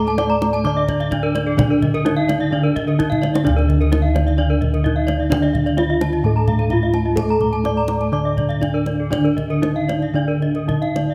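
Uneven beats pulse at 127 BPM in 4/4, driving this brilliant, shimmering fragment of Balinese gamelan cut from a longer piece in D pelog. A bronze metallophone carries the melody in a dark, smooth voice under a wooden mallet, while a second metallophone plays the accompaniment a register lower with a dry, full tone. Two higher metallophones spin arpeggios with horn mallets, their bright, airy ringing thickened by paired tuning that makes the bronze shimmer and beat. Bossed gongs, struck with padded beaters, anchor the bass with a round, mellow sound sitting up front in the mix. The kendang joins at 0.1 s with tight, hard-handed strokes and cuts in with a short fill at 3.1 s, all captured in a light reverb through close, detailed microphones.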